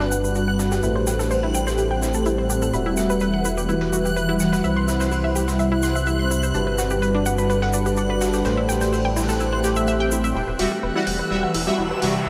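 Bittersweet and expansive, this progressive house passage moves at 126 BPM in a straight 4/4, centred on E minor and drifting through Gmaj7, Am7, Emadd9 and C beneath a dreamy, reverb-soaked mix. A shimmering, ethereal pad holds sustained chords with a slow attack, octave-up shimmer and a phaser, while a warbling, detuned analog pluck spins arpeggios roughened by vintage 12-bit grit and delay, both carrying filter sweeps. A soft supersaw, the loudest part, adds smooth, mellow stabs through a low-pass filter and delay, and a round, deep analog bass anchors the low end. Distant jazz brushes on hi-hat, shaker and snare sit far back in a roomy studio space alongside a grainy egg shaker, with a reversed, swelling granular texture floating high above. At 10.4 seconds a build-up begins once the brushes have faded, a bright, layered electronic hi-hat enters at 10.6 seconds, and an electronic riser enters in the background at 11.3 seconds.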